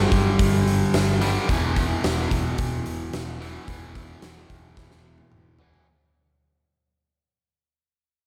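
An overdriven stack guitar and a scooped, compressed distorted guitar with slapback echo open this driving, aggressive hard rock excerpt in E minor at 110 BPM together with a growly, amped picked bass, playing a low riff over G5 and E5 power chords, joined almost at once by an up-front acoustic drum kit with a fat snare, punchy kick, hi-hat and toms in a bright stone room, all under light reverb as the whole fades out and the drums play a fill from 4.8 to 5.9 seconds.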